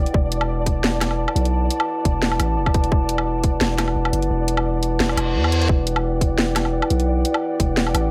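A dark, detuned analog pad with chorus and sidechain pumping holds an E minor chord over a deep, sine-toned 808-style bass and a mellow, pulsing gated texture in the background, as overdriven drum and bass drums with a cracking snare, bright hats, woodblock and a tight electronic kick drive a cinematic, spacious half-time groove at 173 BPM, the kick dropping out at 4.3 seconds before a reverse cymbal at 5.1 seconds ushers it back at 5.7 seconds in this short excerpt from a longer piece.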